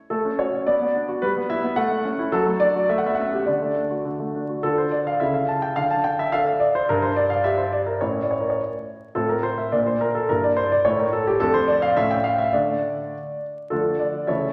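A straight 2/4 pulse at 106 BPM carries this cheerful, elegant classical-period piano sonatina, cut from a longer piece, which opens in D major before turning to D minor at 4.6 s. A solo concert grand, clear yet worn in tone with a deep bass, sits up front and spans from F2 to A5. A wet recital hall reverb surrounds it, and a layer of vinyl crackle adds an aged patina.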